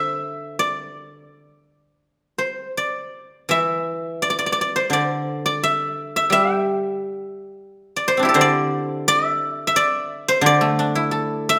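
A solo guzheng, silvery and ringing under fingerpicks and placed up front, opens this serene, pastoral Chinese traditional fragment from a longer piece, moving in a free rubato around 76-90 BPM in 4/4 through the D shang mode from D3 to G5, with a new passage beginning at 3.5 seconds and a moderate recital-hall reverb lingering around the notes.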